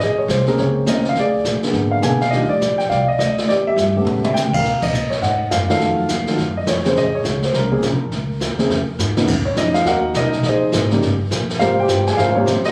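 A phone recording in a club-like room with light reverb and compression captures a cool, late-night jazz piano trio swinging at 207 BPM in Bb minor, where a dark, mellow baby grand carries the melody up front over woody pizzicato upright bass and a distant, roomy brush kit with dark cymbals and a boomy kick, marked by drum fills at 4.1 and 9.0 seconds and a band accent at 4.8 seconds in this fragment of a longer piece.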